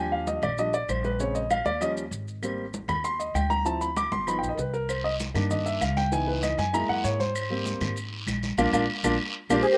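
A grand piano takes the solo throughout this lively, sophisticated Afro-Cuban jazz excerpt, sitting up front with an intimate tone, audible action noise and a touch of slapback echo as it moves through rich extended chords. Beneath it, a woody pizzicato upright bass holds the low end, while thick-skinned, saturated congas and distant claves keep a straight groove from the background alongside close, grainy maracas. A raspy guiro joins at 4.9 seconds, and the band lands a shared accent from 8.6 seconds. At 9.5 seconds, a soft-mallet vibraphone with a slow motor vibrato and a ringing, metallic shimmer takes the melody, joined by a breathy jazz flute carrying a second line. The sound is dry and open-air, giving the ensemble a close, uncluttered presence in this fragment cut from a longer piece.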